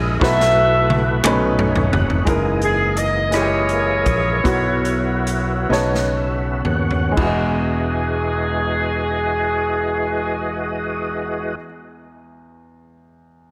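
Reverent and hopeful, this slow gospel passage in 6/8 and E major moves at 37-58 BPM and slows down between 2.3 and 7.2 seconds before settling on an Emaj9 chord. A bright, tight saxophone section carries the melody up front with light vibrato and a slapback echo, while a clear, smooth grand piano with a vintage tone accompanies and plays on alone to 13.5 seconds. An overdriven tonewheel organ holds thick, gritty chords with key click, chorus vibrato and a slow rotary speaker, adding fills alongside the drum fills. A fingered electric bass gives a growly, direct low end, and an airy, polished big-band drum kit with a hall sound, dark cymbals, a medium-tuned snare and a punchy kick swings from 0.2 to 7.4 seconds. A crisp, close group handclap lands briefly near 1.2 seconds, and a moderate echo chamber reverb surrounds the whole passage, which is cut from a longer piece.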